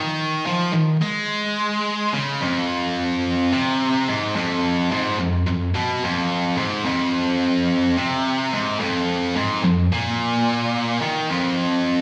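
A straight 4/4 pulse drives this menacing rock fragment, where a lone heavy high-gain electric guitar, bright, picked and double-tracked, sits up front through its distortion in a low register from F2 to Ab3, shifting into a new section at 2.4 seconds and carrying on to 12.0 seconds inside a lush, wet hall reverb that gives it a big arena sound.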